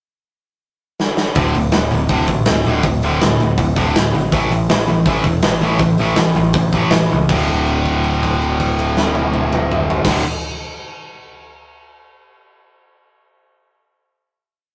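Punk rock with a rowdy, rebellious straight feel, where a big acoustic rock kit with a tight kick and medium-tuned snare bursts in with a drum fill at 1.0 seconds before an up-front, bright overdriven guitar, a sludgy distorted guitar set in the background, and a growling, overdriven picked bass drive palm-muted and pumping eighth notes over D5 and A5 power chords, all captured in a rough rehearsal-room sound with tube saturation until a held final chord rings from 7.3 seconds.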